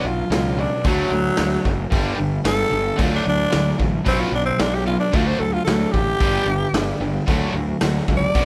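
A growling, raspy tenor saxophone takes a close-miked solo from the first moment of this driving, sunny classic rock excerpt in D major at 112 BPM, its breathy vibrato carrying a slapback echo up front. Beneath it, a biting overdriven guitar and a sludgy distorted guitar play riffs in the background, a fuzz-laden, round fingered bass holds the low end, and a very quiet, dark steel-string acoustic guitar is picked with audible finger squeak. At 0.3 seconds a raw garage drum kit joins, with a punchy kick, a medium-tuned snare and hi-hat saturated in a pumping stone room, over changes cycling through Bmadd9, D and G under light reverb.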